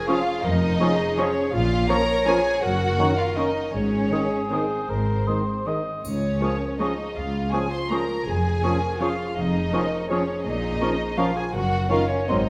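Classical orchestral ballroom waltz in a sweeping, festive 3/4 with rubato, where a dark, intimate violin section carries the melody over second lines from a mellow clarinet, a lush second violin section, a pure flute and a mellow cor anglais, supported by a distant bassoon, a very quiet viola section, background French horns holding chords, warm cellos and portamento-tinged double basses, with a close, dry triangle sounding briefly from 6.0 seconds, all bathed in a wet scoring-stage reverb in this excerpt cut from a longer piece.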